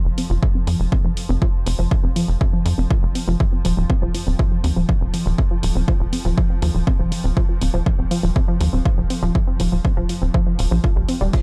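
A nasal, sawtooth sequencer bass drives this dark, driving melodic techno excerpt, sitting up front beside a punchy, tape-warm electronic kick, with the bass pumping under sidechain compression alongside warm electronic hi-hats that pump as well. Above them, a round analog pluck plays chorused arpeggios through tape echo while a filter sweeps across its sound for the whole passage, and a swarming, detuned drone with ring modulation and granular texture hangs low in its own reverb. A dark, brushed ride cymbal surfaces faintly in the background only at 11.3 s, and the overall production stays dry and dusky.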